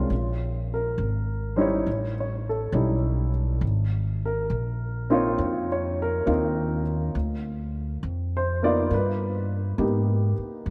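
A baby grand piano and a pizzicato upright bass open this tender, romantic jazz ballad together, moving at a slow, swung 68 BPM in 4/4 through Bbm7, A7#11, Ab69, Dm and Gaug. The piano sits up front with an intimate, natural tone, short sustain and audible action noise, while the woody, steel-strung bass holds the low end. A lush hall reverb bathes the whole short passage in a dreamy glow as it is cut from a longer piece at 10.7 seconds.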